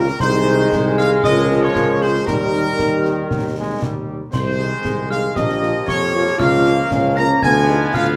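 A spirited, proud military-style march for wind band opens at once in Ab major at 116 BPM in a straight 2/4, with a loose, soft-attack trumpet section carrying the melody while clear woodwinds, a dark, vibrato-tinged euphonium and a bell-like glockenspiel struck with soft plastic mallets add second lines in the background. Beneath them, a dark, tight French horn section fills in accompaniment, a bright trombone section holds sustained chords, and a mellow, distant tuba anchors the bass, with concert snare, clash cymbals and concert bass drum entering at 0.1 seconds. The harmony moves from Ab/C through Bbm7/Db and Eb to a closing Ddim7, all in a moderate large studio reverb, and this brief cut from a longer piece ends around 8.2 seconds.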